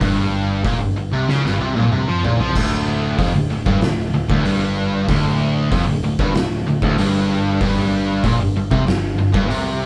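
Sludgy and brooding, this short stoner and doom metal passage trudges along at 95 BPM in a straight 4/4, set in D minor with the tuning pitched slightly low at A4 = 438 Hz. Up front, a bright, double-tracked overdriven electric guitar carries the low riff, backed by two dark fuzz guitars on the same riff, one very quiet and the other sitting in the background with added distortion. A growling picked electric bass, bright and overdriven, sits lower in the mix beneath them. The oversized low-tuned drum kit is punchy and saturated, with a fat snare, dark cymbals and a gritty edge, heard up front in a bright stone room; it drops out at 9.7 seconds, just before the other parts end at 9.9 seconds. A drum fill from 1.3 to 2.6 seconds leads into a repeat of the opening section, while the harmony moves from Gmadd11 to Dm at 2.6 seconds and back to Gmadd11, all captured with the feel of a band playing live in one room under light reverb.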